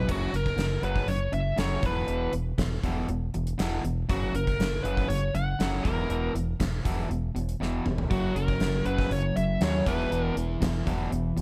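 A biting, overdriven lead guitar opens this confident, swaggering classic rock excerpt up front, carrying the melody over a low overdriven semi-hollow guitar riff and a growling, punchy fingered bass with its own overdrive. A gated 80s drum kit follows at once, up front with a fat snare, tight kick, glittering cymbals, hi-hat and toms in an airy stone room. The straight 4/4 groove moves between F# and E5 chords. A drum fill at 7.6 seconds leads into the return of a second semi-hollow guitar at 8.1 seconds, playing a mellower, warm riff in a higher register from the background. The lead guitar drops out at 10.3 seconds, leaving the two riffing guitars, bass and drums to carry the final E chord, all set in a studio reverb.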